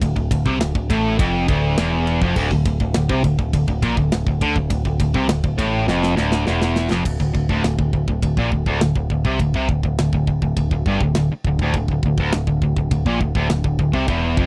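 A double-tracked, overdriven electric guitar leads this epic, aggressive heavy metal passage, picking a low, bright riff that sits up front for the whole 14.5 seconds. Beneath it, a growling picked electric bass, also overdriven and heard direct and amped, holds the low end an octave below the guitar. An acoustic metal drum kit drives a straight four-beat feel with a tight kick, a medium-tuned snare, and crash and ride cymbals, placed mid-forward in a studio room. A drum fill from 5.9 seconds leads into a second section at 7.1 seconds, where the harmony drops away from the opening minor chord and the riff carries on over the rhythm section. The sound is dry and close, with the unadorned character of a 1970s studio session, and the passage is cut from a longer piece.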